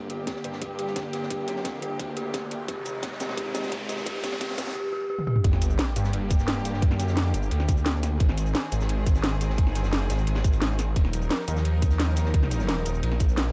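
Mechanical and futuristic, this dark technical drum and bass excerpt pairs a growling, distorted saw bass with pumping sustained chords from a clear, biting studio string section and eerie inharmonic synth bell arpeggios under a filter sweep, a riser and sub drop arriving at 2.3 s ahead of the drop at 5.4 s, all driven throughout by a tight up-front electronic kick, a drum and bass kit with cracking snare and metallic hats, and a gritty breakbeat kit with a rolled-off top sitting in the background.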